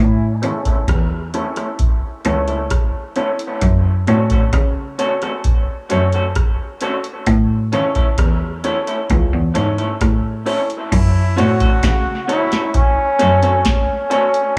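At a slow 66 BPM in straight 4/4, a booming analog drum machine sets a meditative, deep dub reggae groove in F# minor, its tape-warm kit heard up front with a deep kick, tonal snare, metallic hi-hats, rim click and crash cymbal. A bright, focused bowed cello carries the bass line with vibrato, sounding briefly alone before the other parts arrive at 0.4 seconds. A twangy, slightly broken-up electric guitar through a small old amp picks a lo-fi accompaniment soaked in spring reverb and dub echo, while a woody upright piano adds short-sustained stabs through a low-pass filter and echo. The opening stretch is a break with a filter sweep, as the harmony moves between A and F#m. At 10.9 seconds a clear solo trombone enters up front with a smooth top and light vibrato, playing a pop-style melody through a low-pass filter and dub echo in this echo-heavy mix with light reverb and a touch of studio ambience, cut from a longer piece.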